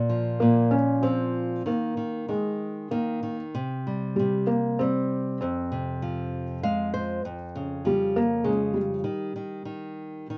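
Gentle and tender, this lullaby for children drifts at 97 BPM in 3/4 with a rubato, unhurried feel, and it is a short cut from a longer piece. A felt-muted upright piano carries the melody from 0.4 seconds, staying in a narrow low-middle register with a soft, dark tone, thick felt and audible action noise that make it sound close and intimate. A fingerpicked nylon-string guitar accompanies throughout, its small acoustic sound sitting up front beside the piano and spanning a broad range that reaches both below and above the tune. The guitar adds a brief fill at 6.3 seconds, while the harmony moves through Bb5, C5, Fm and Db/F with bare, chordless moments along the way. A moderate studio ambience gives the pair a modest sense of room around them.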